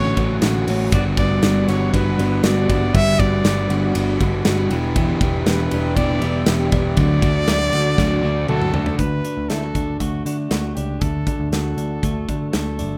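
A lightly vibrato-tinged solo trumpet carries the melody over a crunchy overdriven guitar, picked arpeggios from a slightly broken-up guitar through a small old amp, a dark, foam-muted picked bass and a very quiet, silky string machine with phaser and ensemble chorus, in a bright, nostalgic stretch of jangly indie pop cut from a longer piece. A punchy, up-front acoustic drum kit with a pumping room sound drives the straight 4/4 groove and plays a fill from 8.0 to 9.0 seconds, after which the overdriven guitar and string machine drop out. The trumpet, arpeggiated guitar, bass and drums carry on into a new section, all with light small-room reverb in a rough home-demo mix.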